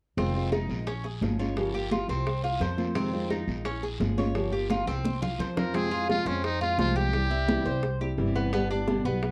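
This short cut from a longer piece sounds like a worn, warbling old cassette, its pitch drifting gently in a small room. It's Cuban son and guajira in F minor at a brisk 172 BPM, sultry and nostalgic, with a bright, fingerpicked nylon-string guitar and a metallic, double-strung tres spinning arpeggios throughout. A woody, growly pizzicato upright bass sits up front, while bright, high-tuned congas and tight, dry bongos played with hard hands stay in the background, joined by a raspy, band-limited guiro until 5.7 seconds. A drum fill marks the turn into the second section, where the harmony shifts from a cycle of seventh chords to plain F minor, C and G. At 5.6 seconds a buzzy, thin trumpet with a metal mute steps forward for a brief jazz-style solo, breathy and scooped, with light vibrato, lasting until 8.0 seconds.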